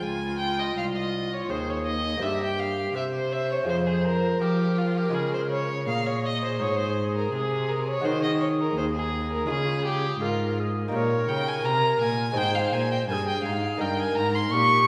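A focused, smooth-topped violin sits up front carrying the second line beside an airy, chiffy tenor recorder melody in this flowing, dance-like baroque-style sonata excerpt in F minor at 83 BPM, with an expressive bowed cello adding portamento in the bass and a delicate fingerpicked gut-strung lute filling out the continuo, heard in a reverberant scoring-stage room.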